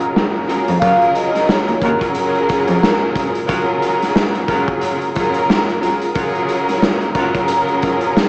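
A lush, bowed studio string section and a raw garage drum kit with a punchy kick and rolled-off top open this nostalgic, soulful, swung boom-bap hip-hop excerpt, joined by a smooth, bowed solo cello bass at 0.7 s and, at 0.8 s, a mellow, ringing soft-mallet vibraphone melody alongside distant, roomy jazz saxophone stabs carrying analog delay, all heard as a home cassette recording with vinyl crackle, a small-speaker sound and light reverb.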